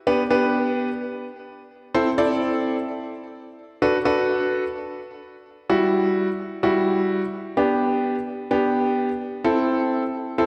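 A clear, intimate baby grand piano plays alone from 0.1 to 10.5 seconds in this cool, nocturnal pop passage cut from a longer piece, its up-front, natural tone with long sustain, audible action noise and digital delay moving through G, Am, D6 and Emadd9 chords inside a wet concert hall reverb.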